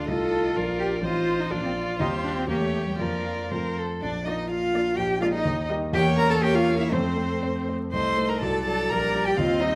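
Cheerful and lively, this brief passage from a quick classical-period movement for piano quintet moves in 2/4 at roughly 114-128 BPM in Bb major, with a flexible, rubato feel. A single violin carries the melody high above the ensemble, its soft attack, vibrato and expressive portamento sounding close and warm. A second violin and a cello supply the second line, both rich and vibrato-laden, the violin focused and the cello smooth and even, each set a little back in the space. The concert grand piano, up front with deep bass, joins a smooth, even viola in the accompaniment, and the cello sits slightly louder than the upper strings. The harmony turns through diminished and dominant colours, with a rootless A7b9b13/E at 5.9 seconds, as the opening idea gives way to a new section at 4.0 seconds. Close, detailed microphones capture the players in a moderate recital hall reverb, with a faint vinyl crackle beneath.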